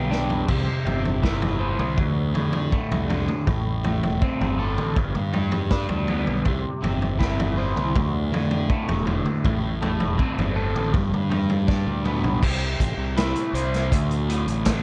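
A crunchy, double-tracked overdriven guitar leads this mysterious, dark psychedelic rock excerpt at 80 BPM, its picked riff washed in phaser and cycling through C, D5, Am and G over a round, fuzzed fingered electric bass. An up-front vintage drum kit with a punchy kick, dark cymbals and a rolled-off top opens with a fill at 0.1 seconds and returns with another at 11.7 seconds before a new section at 12.4 seconds. Light reverb and a cassette-tape character lend the whole a murky, aged sound.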